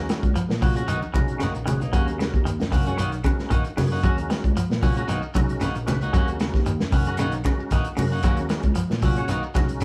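Intense and hypnotic, this afrobeat groove at 114 BPM in Eb minor is cut from a longer piece and circles between Ebm7 and Bmaj7 over a crunchy breakbeat kit that sits up front with a tight kick, dark, saturated tone and a rolled-off top, while congas entering at 0.6 s and a grainy shekere stay in the background. A barky, overdriven tine electric piano through a combo amp and a phaser carries the bass line, beneath a full, percussive tonewheel organ with slow rotary speaker, overdrive and chorus vibrato. Two clean electric guitars fill out the band, one twangy and bright playing arpeggios, the other warm and picked with stabs, all captured live in one room with a moderate stone room reverb.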